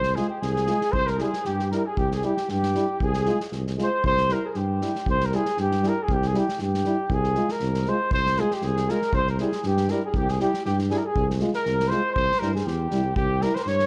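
This Balkan brass band fragment in 2/4 runs at 118 BPM and speeds up throughout, with a swung sixteenth-note feel and a bittersweet, fiery mood. A mellow flugelhorn carries the melody up front, its vibrato tone distant and roomy in a classical style, while a trumpet with a soft attack and jazz-tinged vibrato plays a second line in the background, dropping out between 5.1 and 8.1 seconds. Beneath them, a dark, punchy French horn and a euphonium with light vibrato and a smooth top fill in the accompaniment. A tuba up front holds down the bass. An acoustic drum kit played with bundle sticks gives a punchy kick and a medium-tuned snare, its sound rounded and rolled off at the top as if in a small room. The harmony rocks between Fm/C and C, and light reverb sets the whole band in a dark, warm production.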